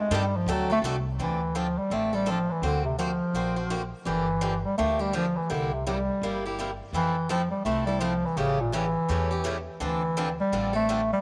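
Swinging and bittersweet, this short cut from a longer piece is acoustic string swing in the jazz manouche style, moving at 167 BPM in D minor with a swung eighth-note feel. A warm bass clarinet carries the melody up front in its low register, its jazz phrasing colored by vibrato and scooped notes, and it takes a solo over the opening 1.2 seconds with the band joining almost at once. A bright, boxy swing-style acoustic guitar provides picked accompaniment throughout, with audible finger squeak, while a parlour-toned steel-string acoustic guitar sits in the background, dropping out after a brief opening figure and returning at 6.9 seconds. Underneath, a pizzicato upright bass with gut strings gives a woody, thumpy foundation. The harmony moves from D7 through Dm9, an altered D7, Gm7, C7, Fmaj7 and A7 before landing back on Dm9, all set in a moderate plate reverb that lends the group a shared sense of space.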